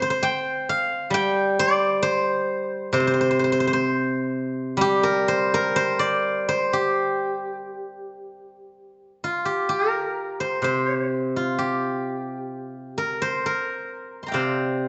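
A moderate recital-hall reverb surrounds this short recording, and its top end stops at 8.0 kHz, giving the sound a softened, rounded sheen. It is a contemplative, elegant fragment of Chinese traditional music, cut from a longer piece and played by a solo steel-string zither. The acoustic zither sits up front, plucked with fingerpicks, and its silvery, ringing tone spans from C3 up to C6. The playing moves in a free rubato over an underlying 4/4 metre, unhurried and reflective. At 8.7 seconds the music turns to a new section, which carries on until the recording ends at 14.9 seconds.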